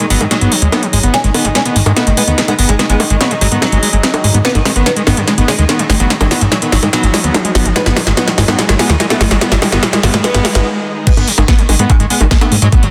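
A straight four-four pulse drives this alien, intense stretch of psychedelic trance, cut from a longer piece, with an up-front drum-and-bass kit of bongos, crash cymbal, metallic hi-hats and a cracking, softly clipped snare playing a fill through the build-up until a stop at 10.7 s. Underneath sits a punchy, funky analog bass with a fast filter pluck, while a squelchy, screaming acid riff, distorted and chorused, pumps with sidechain and trails delay. Over this, a bright, woody oud plucked with a plectrum carries the melody, its double strings coloured by phaser, delay and the same pumping. Very quiet layers fill the background: a granular cloud pad that blurs and evolves, an overtone-sweeping drone holding sustained chords with moving overtones, and a faint electronic riser. At 11.1 s the drop lands with a knocking, tape-toned electronic kick pushed forward. Light reverb and a dense, heavily limited master keep the sound tight and forceful.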